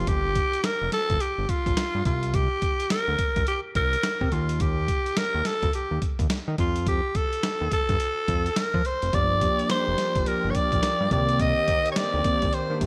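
A raspy, gritty alto saxophone sings a confident, bouncy new jack swing R&B melody up front over fat, saturated sawtooth analog bass and a compressed, pitched-down boom bap drum kit with a thumpy kick, until a bell-like tine electric piano with analog chorus and a lush, detuned unison pad in the background return at 9.1 s, all within a bright 1980s-style digital production bathed in moderate plate reverb.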